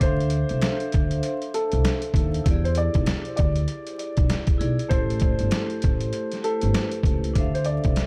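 Dark and tough, this boom-bap hip-hop excerpt moves at 98 BPM in 4/4 with a swung sixteenth-note feel, set in D dorian over a progression of Dm7, E7 and Am7 that returns to Dm7 at 7.4 seconds. A gritty, pitched-down sampler-style drum kit sits up front with a thumpy kick, a medium-tuned snare and hi-hat, compressed and re-recorded in a small room, while a woody pizzicato upright bass on steel strings anchors the low end. A dark, mellow upright piano carries the melody with long sustain, filtered and sent through dub echo. Alongside it, a bright, airy vibraphone struck with medium hard mallets rings with slow motor vibrato, colored by cassette tape, filtering and dub echo. A very quiet finger snap appears from 0.6 to 6.9 seconds, and the dry, echo-heavy mix is dusted with vinyl crackle.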